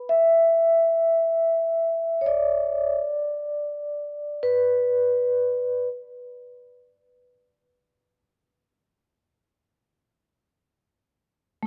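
A solo vibraphone played with soft mallets carries this short hip hop fragment, its metallic, ringing tone mellow and warm, with a slow motor vibrato. The mood is nostalgic and melancholic, and the instrument sits up front, moving between A3 and E5. It sounds from the start until 5.9 seconds, then returns only briefly at 11.6 seconds before the cut. Cassette tape colouring and a low-pass filter dull its edges, giving the tone a faded, worn quality. A wet plate reverb with a long 2.5-second tail lets the notes seem to hang and dissolve into the room.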